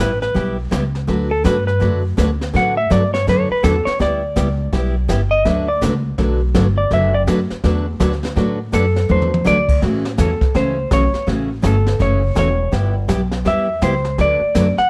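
A light reverb gives this short, cheerful western swing passage a clean studio-room sound, with the lap steel, acoustic guitar and upright bass all placed up front. At a swinging 165 BPM in D major, the clean, fingered lap steel carries the melody as a slide solo with a warm, electric tone, moving over G6, D6 and A6 chords. A full-bodied, picked dreadnought acoustic guitar supplies the accompaniment, while the woody, growly upright bass is plucked with a thumpy attack. The brushed drum kit comes in at 0.2 seconds, dark and smooth with dark cymbals, a high-tuned snare and a boomy kick. A brief drum fill sounds from 9.1 to 9.5 seconds before the passage, cut from a longer piece, runs on to its end.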